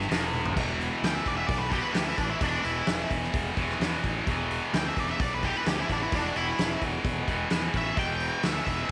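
A straight 4/4 pulse at 130 BPM drives this gritty, swaggering blues rock power trio clip with a strong southern rock streak, taken from a longer piece. The huge arena drum kit sits up front with a fat snare, a punchy kick, hi-hat, crash cymbal and toms, and a drum fill lands at 0.3 seconds. Underneath, a tight, bright distorted rhythm guitar, picked and double-tracked, holds down a low riff over an E minor chord that settles onto an E5 power chord, while the fingered electric bass adds a growly, overdriven fuzz tone in the lowest register. At 1.0 seconds a dark octave-fuzz lead guitar enters with a wah-tinged, distorted solo line that sits in a higher register and runs to the end. A moderate echo chamber reverb gives the drums a natural big-room sound.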